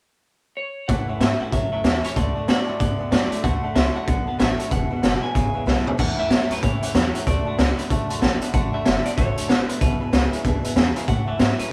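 Rockabilly at a swung 188 BPM in A major, retro and rowdy, where a bright, slightly broken-up lo-fi electric guitar through a small old amp picks the melody from 0.6 s before the band joins at 0.9 s: a gritty, saturated garage drum kit up front with punchy kick and high-tuned snare, a woody, thumpy upright bass on gut strings, a clean, compressed twangy electric guitar riff in the low register, a very quiet full-bodied steel-string acoustic guitar and a jangly, metallic tack piano accompanying, the band playing live in a small room as the chords move from A through D and E7, with a drum fill at 5.7 s.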